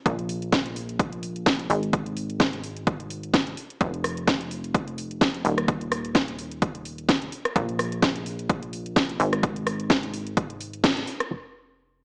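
Piano house at 128 BPM in F minor, this short passage cut from a longer piece carries a soulful, bittersweet mood, with a 55% swing on the sixteenths giving the 4/4 groove a loose, easy lilt. A punchy, overdriven electronic kick sits up front, layered and re-recorded in a large room. The house drum kit adds a cracking snare, metallic hi-hats and rim clicks, also overdriven and up front, with low-pass filtering on the hats, snare and room. Beneath them, a plucky analog bass built from sawtooth, square and sine waves, wave-folded with a fast-attack filter pluck, moves between Eb1 and Bb1 with a funky, decaying bounce and sidechain pumping. The whole take has a gritty hardware character and a small-speaker sound under light reverb, and the band hits a shared accent at 10.8 seconds before the drums drop away and the bass rings on alone to 12.0 seconds.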